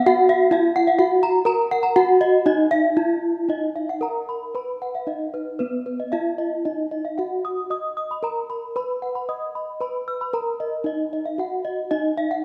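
A close-miked, dry bronze metallophone struck with a wooden mallet carries the melody up front in this shimmering, brilliant gamelan passage cut from a longer piece, alongside a second bronze metallophone playing ringing higher arpeggios, both in paired tuning so each note beats, with a brief break from 2.7 to 3.5 seconds before the second section and a recital hall's reverb lending a lingering tail.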